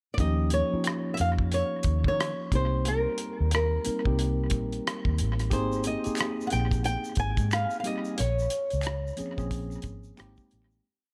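A small, echo-soaked room gives this short, complete R&B and neo-soul piece a relaxed, sensual air, with a fade-out starting at 8.2 seconds. At 90 BPM in Ab major with a swung 16th feel, a cloth-damped, thuddy drum kit with a tight kick plays a laid-back beat with ghost notes, while a dark, foam-muted fingered electric bass plays a laid-back line with muted ghost notes, slides and chromatic approach notes, and a worn, slightly out-of-tune tine electric piano adds mellow rootless chords over Eb9, Cm7, Abmaj9 and Bbm9. Up front, a fingerpicked flamenco guitar with audible finger squeak and tape echo states short call-phrase motifs, and from 5.5 seconds a faint, band-limited egg shaker and finger snaps sit in the background.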